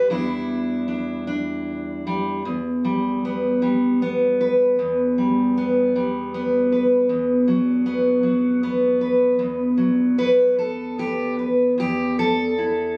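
A fingerpicked steel-string dreadnought sits up front in this wistful, reflective solo folk piece, its fresh strings sounding warm with the occasional finger squeak as it moves through Em7, Em, B5/E and back to Em across a range from E2 to B4. The playing is rubato in 6/8 at around 52 BPM in E minor, tuned to A4 = 441 Hz, with a new section arriving at 2.5 seconds and another at 11.8 seconds. Captured on a phone in a club, the guitar carries light reverb and a murmur of room ambience, and the recording is cut from a longer piece.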